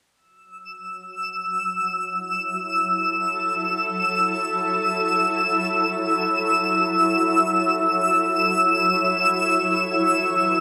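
A twinkling granular texture, sparkling on a high E6, opens this serene ambient passage at 0.7 seconds, its FM tone carrying an octave-up shimmer with slow attacks and long releases. At 1.5 seconds a shimmering ambient pad enters beneath it, an ethereal, detuned unison of sine tones spanning E3 to C#5, softened by chorus and sustained in long chords as it fades in. Set in free time and F# minor, the harmony rests on F#m7 before moving to C#madd9 at 9.8 seconds. Both parts sit up front with their own built-in and shimmer reverb, within a cavernous cathedral space whose five-second decay lends the whole passage a reflective, suspended stillness. Cut from a longer piece, the recording feels like a brief, weightless moment caught in mid-air.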